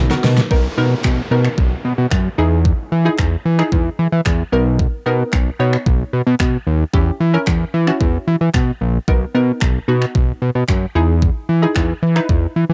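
A faint, shimmering string machine opens with a brief sustained chord over a drum fill, gone by 0.5 seconds as this carefree, upbeat dance-pop excerpt in B major settles in at 112 BPM. A fat, thick, detuned sawtooth bass sits up front with a sidechain pumping feel, while punchy, bright chord stabs with a filter pluck, ring modulation and chorus also pump and carry a cassette-tape grit. The electronic, layered pop drum kit brings a knocking kick, fat snare, hi-hat, shaker and finger snaps, overdriven and re-recorded in a small room so it lands close and hard. A background downlifter passes through from 0.5 to 4.8 seconds, and a very quiet, hollow group handclap adds a human touch. The harmony moves between Bmaj7 and Emaj7 with a turn to Em6, captured as a dry home recording on cassette with little reverb.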